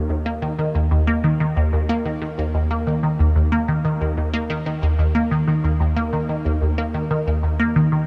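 Cassette-tape warmth and a huge, moderate ambient reverb surround this hypnotic, expansive ambient excerpt, where a lone resonant blip pluck, juicy and squelchy with a bright, detuned square-and-sawtooth edge, a noise layer, fast attack and short decay, sits up front through phaser, subtle chorus and delay for all 8.1 seconds.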